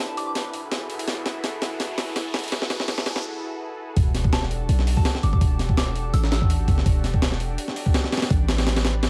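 Drum and bass with a jungle edge, this dark, frenetic excerpt from a longer piece runs at 166 BPM in E minor, its 16ths carrying a slight swing. A lush, warbling unison pad holds chorused chords throughout, moving from F#m11 to Em11 and then Am11, while a breathy, wind-like tuned noise texture sits very quietly alongside it until 3.2 seconds. The compressed, gritty breakbeat kit, with its thumpy kick, medium-tuned snare and tape-warm character, sits up front with studio reverb and filtered hats, kick and snare, and it plays a fill during the build-up as a background riser climbs toward a short break. At 4.0 seconds the drop hits with an impact and a sub drop, and a deep, boomy 808-style bass with a sine body and noise layer arrives up front. A soft, pure FM bell melody floats in the background, with chorus, phaser, dub echo and vintage 12-bit sampler grit, appearing briefly at the start and again from 4.3 to 6.5 seconds. 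The mix is dry overall, with a layer of vinyl crackle.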